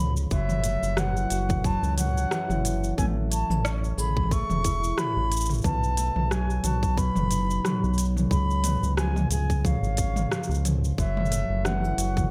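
A lightly swung sixteenth-note groove in 4/4 sets a playful, pastoral folktronica mood in this short excerpt cut from a longer piece. A crisp, up-front organic electronic drum kit of cabasa, hi-hat, rim click and toms comes in at 0.2 s, joined at 0.3 s by a tight electronic kick, both carrying a tape-softened, produced character as if replayed in a large room. Beneath them, a round analog bass with a deep, dark sawtooth-and-sine tone, fast attack and long sustain sits prominently, thickened by tube saturation. A fingerpicked concert harp rings out acoustic arpeggios through tape echo, while a bright, reedy baroque flute with a woody, pure tone, gentle vibrato and soft attack sings the melody from a distance, also through tape echo. The harmony moves from F#m7 through Amaj7, B7 and C#7 before returning to F#m7, all wrapped in a light reverb.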